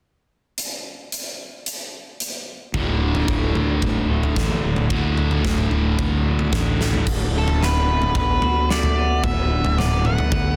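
A huge, roomy arena drum kit opens this excerpt alone, its punchy, softly clipped kick, medium-tuned snare, toms, hi-hat and bright crashes sitting up front in a pumping hall sound. At 2.7 seconds the band crashes in on a D power chord: a double-tracked, distorted rhythm guitar riffs low and bright, a growly fuzz bass sits underneath, and a lo-fi, twangy guitar through a small old amp picks arpeggios in the background with a subtle chorus shimmer. A drum fill leads into the next section, where the riff guitar drops out and the harmony moves to a D6 chord. From 7.4 seconds a dark, octave-fuzz lead guitar carries the melody up front, ranging from A4 to F#5. It's quiet-loud alternative rock in a straight 4/4, bittersweet and cathartic, with light room ambience and a dense, heavily limited master.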